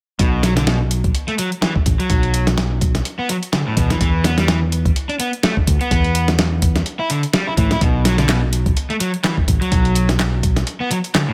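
A crunchy, overdriven electric guitar leads this swaggering, raw breakbeat passage with a picked riff in B minor over chords moving from B5 to E5 at 4.0 seconds and back to B5 at 7.8 seconds, its tone trailed by tape echo. Underneath at 126 BPM with a swung sixteenth feel, a dusty, gritty sampler-style kit with a thumpy kick and medium-tuned snare sits up front, its compressed, tape-warm sound re-recorded in a large room, while a dry analog drum machine adds overdriven handclaps and hi-hat. A fingered electric bass, direct and amped and placed up front, holds the low end until 10.6 seconds, and the mix as a whole carries little reverb.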